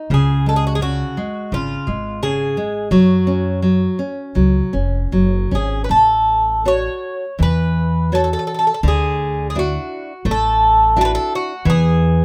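Light reverb surrounds this passionate, longing fado-style ballad excerpt in 4/4, moving rubato at around 75-88 BPM, where a metallic, double-strung Irish bouzouki carries the picked melody over a full-bodied, fingerpicked nylon-string guitar and a woody, thumpy pizzicato upright bass, all three sitting up front as the harmony settles into A major from 5.9 s through A6, Dadd9 and E.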